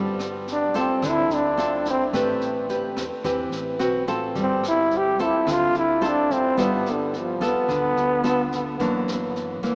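Fingerpicked nylon-string guitar, full-bodied and up front, opens this intimate, smooth bossa nova excerpt at 108 BPM alongside a dark, round hollow-body electric bass sitting in the background, with brushed jazz drums adding rim clicks, a high-tuned snare and a boomy kick from 0.2 seconds. At 0.5 seconds a raspy, growling trombone takes the solo up front, playing with vibrato and scooped notes over chords moving from G9sus4 through Am9 to a closing F#7b13. The whole excerpt sits in a vast, echoing cathedral reverb heard through a small speaker.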